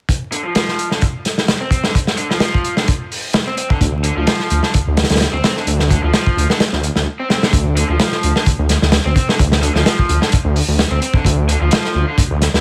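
Vinyl crackle and small-room ambience frame this energetic, raw breakbeat excerpt in D minor at 129 BPM with a light swing, as a crunchy, saturated kit of tight kick, medium-tuned snare and hi-hat drives up front, a lo-fi, overdriven garage guitar riff carries 12-bit sampler grit, a low-pass filter and dub echo, a thick, menacing detuned saw bass enters at 3.8 seconds, and a drum fill at 7.3 seconds leads into the next section.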